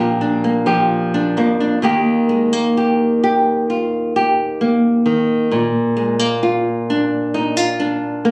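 Folk fingerstyle piece at a slow 65 BPM in Eb major, nostalgic and peaceful, played on a solo nylon-string guitar that sounds small and fingerpicked, sitting up front with a slapback echo. The guitar moves from Bb to Eb at 1.8 seconds and back to Bb at 5.5 seconds, captured on a phone in a room with a light club reverb and compression, in a short cut from a longer piece.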